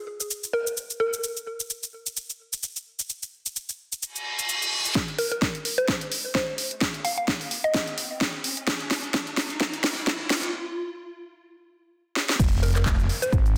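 Bass house at 129 BPM in F minor with a swung, aggressive yet bouncy feel, where an overdriven house kit of cracking snare, bright hats, cabasa, claps and crash drives a woody, mallet-like FM pluck treated with chorus, phaser and digital delay, while a reverse cymbal at 4.1 seconds ushers in a punchy overdriven kick and a build-up with a riser, a break at 10.5 seconds, and a drop at 12.4 seconds where a thick, growling FM bass with tube saturation and sidechain pumping lands up front on Fm, all in a dense, heavily limited mix with moderate digital room reverb.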